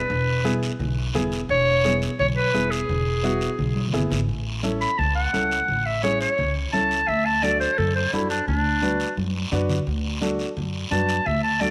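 Sunny and festive, this cumbia excerpt sets a bright, vintage, classical-style clarinet up front, taking a solo from 4.3 seconds, over woody pizzicato upright bass, an intimate upright piano with audible action noise, soft-handed congas in the background and a raspy, close guiro, with drum fills at 3.8 and 9.2 seconds and a moderate plate reverb.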